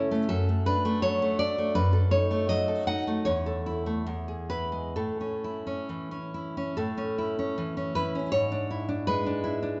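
A lone nylon-string guitar, fingerpicked and full-bodied, sits up front in a romantic, nostalgic solo piece in A major, moving in a rubato 2/4 at around 63-83 BPM with audible finger squeak. Its tender phrases pass through D/F#, F#m6, A/E and E before settling on A, then return to the opening idea and reach E7/G# at 8.3 seconds as this short cut from a longer piece ends. A lush recital-hall reverb with a 1.5-second decay surrounds the guitar, and the church-like recording has a softened top end.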